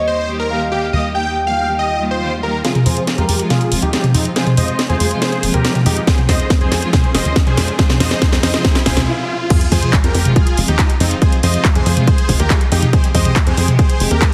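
Uplifting trance at 140 BPM in F minor, driving and soaring, this cut opens on an Eb chord with a velvety, warbling synth lead with chorus and delay, a smooth bowed string section and a tight, dark sequencer bass, while a huge, airy supersaw melody carries a filter sweep through the build-up from 2.6 seconds, where the harmony moves to F minor. An overdriven house kit with a cracking snare and a drum fill drives that build, very quiet swells and a riser sit beneath, and a punchy layered kick enters at 6.1 seconds. After a brief stop, the drop lands at 9.5 seconds with an impact, the strings, bass and supersaw pumping with sidechain under a heavily compressed, radio-like sheen.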